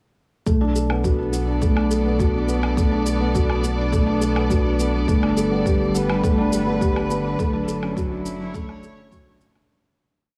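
Piano-and-strings electronica in B minor at 104 BPM, cinematic and melancholic, builds from 0.5 seconds through Bm7, Gadd9 and Dmaj7/F# as an up-front, felt-muted upright piano plays a mellow eight-step arpeggiated sequence with audible action noise and digital delay over a chamber string section's smooth, bowed sustained chords with vibrato, a round, dark analog bass holding sustained roots, both of them sidechain pumping, a deep four-on-the-floor electronic kick that stops at 9.2 seconds, and a restrained, high-pass-filtered shaker and woodblock pulse, all in a small, lightly reverberant room before fading out from 6.6 seconds.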